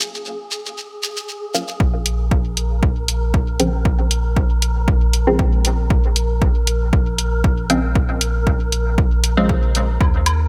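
A muted, sawtooth dub chord stab with phaser and dub echo pulses through this nocturnal, meditative dub techno excerpt, entering at 1.5 seconds over an airy, wind-like tuned noise texture and a grainy shekere that open together under a filter sweep, before a punchy, tape-warm electronic kick, an analog hi-hat, a round sine sub bass on a Bbm7 chord and a brief layered woodblock at 10.0 seconds join in a dry, close-sounding mix.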